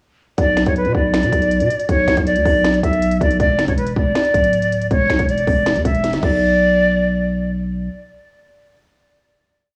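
Hip hop and trap at 159 BPM in a half-time feel, this short, brooding and menacing piece in B minor is built on an airy jazz flute loop with vibrato and an expressive, soft attack, coloured by cassette tape and tape echo and repeated like a sampled loop. Underneath, a growling, buzzy 808-style bass holds long sub-bass notes with pitch slides that follow the kick. An electronic trap kit with a hard-clipped kick, a sharp snare layered with finger snaps and crisp sixteenth-note hi-hats drives the hook until a drum fill at 6.0 seconds leads into a final hit at 6.4 seconds, all set in a home-recorded cassette sound with studio reverb.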